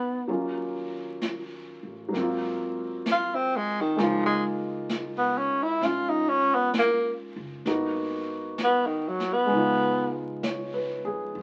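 A breathy tenor saxophone leads this intimate, smoky jazz ballad, its soft-attacked, scooped notes and vibrato carrying the solo melody up front until about 10.3 seconds. Set at a slow 65 BPM in 4/4 with a swung eighth-note feel, the fragment moves through D#m7, G#13, C#69, G#m9 and C#7. A warm grand piano sits close alongside, with its action noise audible, while a woody pizzicato upright bass stays in the background. A brushed drum kit with a medium-tuned snare and hi-hat enters at 0.3 seconds, sounding natural and small-roomed. The whole piece is bathed in moderate large-studio reverb and carries the crackle of a very old 78 rpm record, lending it an aged, smoky glow.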